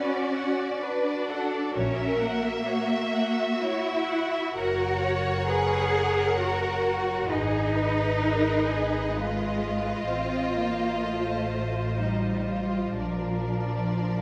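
In a lilting three-beat metre, the pulse breathes with a pliant rubato in this elegiac, melancholic fragment of a slow romantic movement for string orchestra. The first violins carry the expressive, vibrato-laden melody, while a second violin line sings beneath with lush, bowed tone. The violas fill out the accompaniment with a smooth, even sound, and the cellos sit up front as the bass voice, rich and symphonic, sliding between notes with portamento. At 1.8 s the double basses join underneath, adding a warm, smooth, even foundation as the harmony moves from B minor toward F#7/A#, later drifting through Gb, Abm and F7/A before settling on Bb at 13.0 s. The whole ensemble is bathed in a wet scoring-stage reverb that lends the string body a spacious, enveloping glow.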